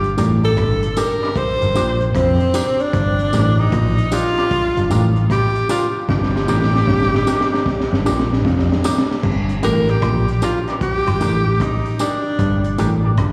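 Roots reggae in a serious, laid-back mood, with an up-front, clear tenor saxophone carrying the melody through dub and slapback echo over a round, foam-muted electric bass, a gritty breakbeat kit with a punchy kick that plays a drum fill from 6.1 to 9.2 seconds, a stringy auto-wah clav riff in the background, a dark, compressed envelope-filtered electric guitar with tremolo, and tambourine and woodblock, all heard as a live gig through the venue's PA.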